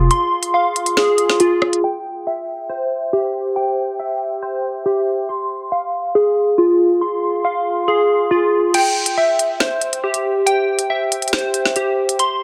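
Glassy, detuned digital keys lead this dark, tense drill excerpt at 139 BPM in a half-time feel, spinning arpeggios between F4 and C6 over Fm and C chords, their wave-folded tone shaded by chorus, phaser and delay and passing through a filter sweep from 1.8 to 8.7 seconds. An electronic drill kit with a woody snare, crisp hats, rim clicks and crash cymbal carries a vintage 12-bit sampler grit, playing only at the opening and again from 8.7 seconds. Light reverb sits around the parts within a dense, heavily limited modern master.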